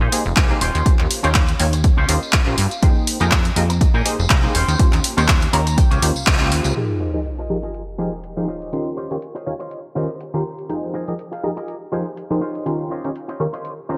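Groovy and sensual, this excerpt of filtered disco house moves at 122 BPM in 4/4 with a light 16th-note swing, set in F minor and alternating between Fm11 and Eb13 chords. A plucky analog bass with tube saturation and a punchy, up-front drum machine with handclaps, hi-hat and gated reverb drive the groove, joined by a punchy electronic kick from 0.4 to 6.4 seconds and a tambourine sitting in the background. Above them, a funky polysynth comp adds mellow sawtooth-and-triangle chords through chorus and phaser. An envelope-filtered electric guitar plays a clean, scooped riff with lush chorus, breaking into clean fills along the way. By 6.8 seconds the bass, kick and tambourine have dropped out as an up-front sub drop lands and a filter sweep begins, carrying the guitar, comp and drum machine through the rest of the passage. Sidechain pumping gives the guitar, bass, comp, tambourine and hats their breathing motion, all within a bright 1980s-style digital sheen and light reverb.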